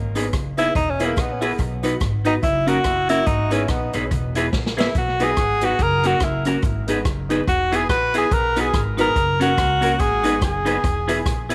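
A cheerful, upbeat ska excerpt opens with woody pizzicato upright bass, then a dark, boxy upright piano stabbing in the background, a clean semi-hollow electric guitar and a swinging big-band drum kit with a punchy kick and a drum fill at 4.5 seconds, all in a small room with vinyl crackle, while a very quiet grainy cabasa sits low and a clear, up-front tenor saxophone takes a vibrato-laden solo from 0.6 seconds, with tape echo on guitar, drums and sax.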